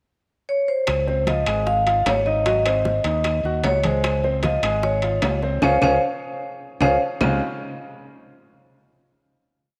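Up front with a ringing, metallic tone from medium hard mallets, the vibraphone states a motif-based melody over a lively, danceable Afro-Cuban jazz groove at 152 BPM in Db major, while a bright fingered electric bass plays a tumbao that anticipates the chords, a clear concert grand piano adds a short-sustained montuno in octaves, very quiet close congas and low-tuned bongos sit beside saturated metal-shell timbales, and distant woody claves tap a two-bar time line, with a wet echo chamber reverb on the room and a drum fill and band accent from 5.6 s leading to a final Dbmaj9 chord at 7.2 s.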